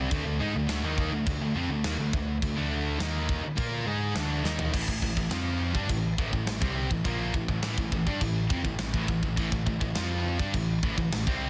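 A bright, high-gain distorted guitar carries the aggressive riff up front from the very start of this short heavy metal excerpt, while a sludgy overdriven guitar plays the riff alongside it from the background and a growly, overdriven picked bass anchors the low end. A tight metal drum kit joins a moment later with a straight 4/4 pulse, its tight kick, medium-tuned snare, crash, china and toms sitting up front with a big-room sound, and a drum fill at 4.4 seconds leads the riff from a D5 chord into A minor at 4.7 seconds. The dense, heavily limited master keeps the whole mood heavy and aggressive within a small-room ambience.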